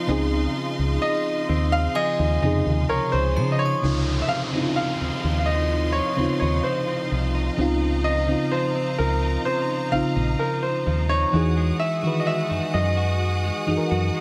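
Contemporary R&B with a dreamy, smooth mood, this short passage from a longer piece moves at a slow, straight pulse. A soft, dark FM electric piano with chorus supplies the accompaniment, while a punchy, round FM bass sits up front and a lush, bowed string section holds sustained chords with gentle vibrato. A bright, compressed clean electric guitar picks arpeggios through digital delay in the background, and a glassy, crystalline synth bell adds texture with chorus, phaser and delay until 4.5 seconds. From 1.0 seconds an intimate concert grand piano carries the melody up front, its polished tone touched with delay and audible action noise. An electronic downlifter drifts in the background, and the harmony rests on a Dbmaj9 before shifting to Emaj9 at 11.3 seconds, all bathed in light reverb.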